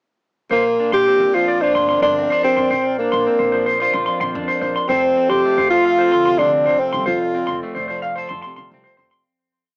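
Recorded at home on cassette with a small-speaker sound and moderate studio reverb, this danceable highlife piece in Bb major moves at 110 BPM in a straight 4/4, shifting from Bbadd9 to F. A dark tenor saxophone with cassette-tape coloring leads up front in a smooth jazz style, its vibrato and scooped notes shaping a motif-based melody until 7.8 seconds. Meanwhile, a twangy clean electric guitar picks bright sixteenth-note arpeggios, and a second clean guitar with subtle chorus adds syncopated fingerstyle accompaniment. Underneath, a hollow, flute-like pad with chorus holds soft sustained chords in the background, and a woody pizzicato upright bass thumps out a syncopated riff before the groove fades out from 7.1 seconds.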